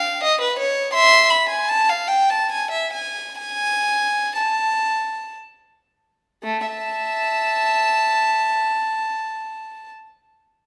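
A solemn, grave baroque-style suite movement in triple time for unaccompanied violin, its single bowed player up front with a reedy, gut-string period tone, moves with free rubato that slows through the opening 6.4 seconds before the second section begins, sounding until 9.9 seconds in a wet recital hall reverb as a passage cut from a longer piece.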